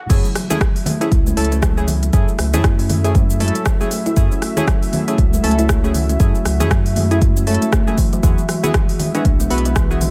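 A driving afro house groove at 118 BPM in 4/4, with a 16th-note swing, is anchored by a deep, tape-warm electronic kick sitting up front. An afro-pop drum kit adds crisp hats, crash, rim click, shaker and toms, while high-tuned, ringing congas under soft hands sit in the background. In F# minor, a round sine sub bass and a detuned, moody sawtooth pad with chorus both pump against the kick, as a woody, hollow kalimba arpeggio and square-and-saw analog key stabs trail dub echoes through a spiritual drop moving from F#m7 to Eadd9 at 8.2 seconds.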